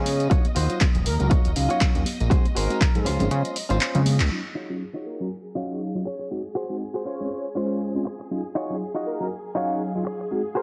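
The groove sits in 4/4 with a light sixteenth-note swing, driven by an up-front, punchy electronic kick and a tape-toned analog drum machine of handclaps and hi-hat, with ringing, close congas and tambourine tucked in the background. This filtered disco house excerpt feels groovy and nostalgic, anchored by a fat, detuned sawtooth bass with a filter sweep, while the bass, guitar, keys, strings, brass and percussion pump under sidechain compression and a low-pass filter. A mellow tine electric piano, heard as if through built-in speakers, comps beneath swirling, warbling string-machine chords colored by ensemble chorus and phaser. A twangy, compressed, direct-recorded guitar plays a riff, and a brassy, bold analog synth brass line carries the melody with chorus, vibrato and digital delay. The kick stops at 2.9 seconds, a drum fill and band accent follow, and at 4.3 seconds the bass, drum machine and percussion drop away, leaving the keys, strings, guitar and brass in light reverb.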